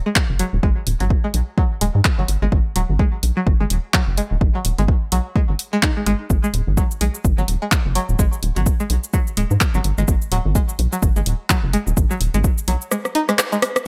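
A swung 127 BPM groove in 4/4 drives this sparse, quirky minimal techno fragment in G# minor, built on a dry, overdriven electronic kick and a punchy analog drum machine of handclaps, hi-hat, rim click and shaker, both sitting up front. A rubbery, hollow square bass with a wave-folded, resonant edge pumps against the kick, while a twangy, string-like resonator pluck carries the riff through chorus, phaser, delay and sidechain pumping. The kick drops out at 12.9 seconds for a closing drum fill, all in a dry room with little reverb.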